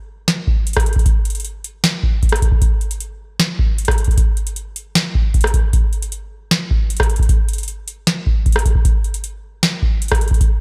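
A half-time groove in 4/4 drives this brooding, hard-hitting hip hop fragment, cut from a longer piece. A booming analog drum machine carries the whole passage, entering at 0.3 seconds and running until 10.5 seconds. Its kit combines a deep kick, a tonal snare, rim clicks and metallic hi-hats, all with a tape-warm character. The machine was re-recorded in a small room and sits up front in the mix. Only a trace of reverb touches it, which keeps the sound dry, close and heavy.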